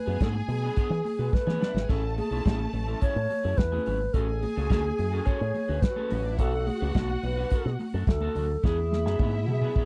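This dry, close recording has the intimate, 1970s studio sound of a short cut from a longer disco piece, moving at 107 BPM in a straight 4/4 in A major with a joyful, celebratory mood. An airy, tongued alto flute with a wooden head carries the melody in straight tone between F#4 and C#5, while a distant, lush string section plays a bowed second line with vibrato. Underneath, a fingered electric bass sits up front, its tone shaped by an envelope filter, and a dark, picked electric guitar at the edge of break-up adds accompaniment with a subtle chorus. The soul drum kit is the loudest part, with smooth dark cymbals, a medium-tuned snare and a tight kick, and it plays fills at 1.3 and 8.6 seconds. High-tuned congas ring softly in the background as the harmony moves from E7 through Amaj7, Dmaj7/A and Bm7 before returning to E7.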